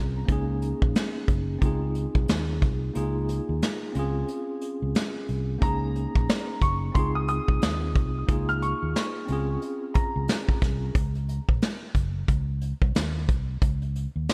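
A clean, tape-tinged tine electric piano and a dark, round fingered electric bass open this nostalgic boom-bap hip-hop excerpt in Db major at 90 BPM. They are soon joined by an up-front, smooth vintage brush kit with a punchy kick, a medium-tuned snare and gated reverb, all riding a swung 16th-note feel through chords such as Gb6, Fm7 and a rootless Bbm9. After a break at 3.0 seconds, a woody, slightly detuned upright piano carries a high melody from 5.6 seconds with subtle chorus and delay. The electric piano drops out at 11.0 seconds, leaving bass and drums to close over Cm and Dbsus2 in a bright, 1980s-style digital production with light small-room reverb.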